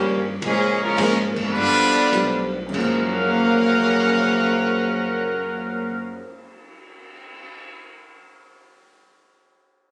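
A brilliant trumpet section sits up front with light vibrato, carrying the melody in this brassy, joyful big band swing excerpt in F# major, cut from a longer piece. A warm trombone section plays a second line beneath it, while a deep-bassed concert grand piano and a very quiet, bright, picked steel-string acoustic guitar fill in the accompaniment. Low in the background, a woody, thumpy pizzicato upright bass on gut strings holds the bottom, and a lo-fi vintage drum kit enters at 0.4 s with muffled tone, dark crash, ride and hi-hat cymbals, a cymbal swell and a tight kick. The tempo sits between 97 and 110 BPM in 4/4 with swung eighths and slows through the opening, with a band accent at 1.3 s as the harmony moves from A#m7 to G7 and settles on F#maj7 at 2.7 s. The sound carries a moderate large studio reverb and the roomy, unpolished character of a phone recording made in the room.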